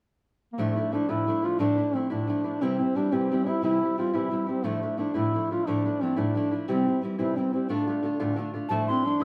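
Drenched in wet studio reverb with the band playing live in one room, this spirited, shadowy Celtic folk passage in 6/8 sets a dusky, up-front duduk melody full of vibrato and scooped notes over a woody, fingerpicked steel-string acoustic guitar with old strings moving between Dmadd9 and C, before a mellow, hollow metal whistle with an airy chiff enters at 8.7 s.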